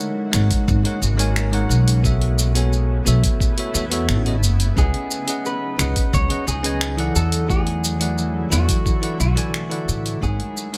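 A relaxed, smooth sunset chillout excerpt at 88 BPM opens with a bell-like tine electric piano through digital delay, a shimmering, ethereal ambient pad with chorus in the background, and a layered deep house kit of finger snaps, hi-hat and shaker. A woody, growly pizzicato upright bass with tube saturation sits up front beside a thumpy, gritty electronic kick, as the harmony moves from G#9sus4 through B9sus4, C#9sus4 and E9sus4. At 4.8 seconds a slightly broken-up, picked electric guitar brings in a delayed melody, and from 8.4 seconds the mostly dry mix fades out.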